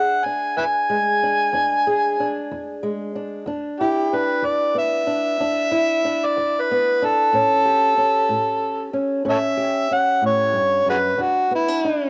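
Recorded at home on cassette, this short cut from a longer acoustic country blues sits in a small room, with a wet spring reverb hanging around both players. At 62 BPM in 12/8, counted in dotted quarters with a straight feel in E mixolydian, it carries a rollicking yet soulful mood. An amplified, overdriven harmonica takes the melody up front and solos for the whole 12.1 seconds. Its gritty tone is shaded with light vibrato, tongue slaps and scooped notes in a jazz-inflected style, with analog delay trailing behind it. Beneath it, a fingerpicked old ladder-braced acoustic guitar plays accompaniment, also up front, sounding dark, woody and boxy on old strings. The harmony rests on E7, moves to A7 at 7.3 seconds, and settles on an E chord with its third dropped at 11.2 seconds.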